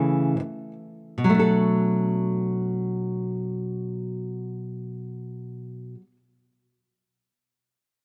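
A fingerpicked nylon-string guitar sits up front in this reflective, wistful pop fragment, easing back in pace over the opening A/C# chord before settling onto Bm7 at 1.2 seconds. Played in a classical style across its low-to-middle range, the lone guitar carries the accompaniment until 6.2 seconds, framed by light reverb and a dark, warm production.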